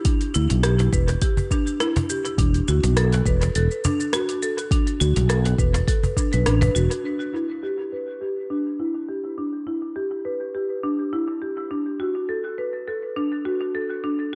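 Overdriven deep house hi-hat, rim click and shaker open this hypnotic, meditative stretch of organic downtempo in E minor at 103 BPM with a light 16th-note swing, quickly joined by a bright, woody hard-mallet marimba arpeggiating through filtered dub echoes, a deep, up-front electronic kick, a direct fretless bass with tube saturation, analog chorus and sidechain pumping, and a snappy, dry cajon over Em7 and D6/E, until every part but the marimba falls away by 7.0 seconds, leaving it alone over Em7 and D in a lightly reverberant, echo-heavy mix until 14.2 seconds.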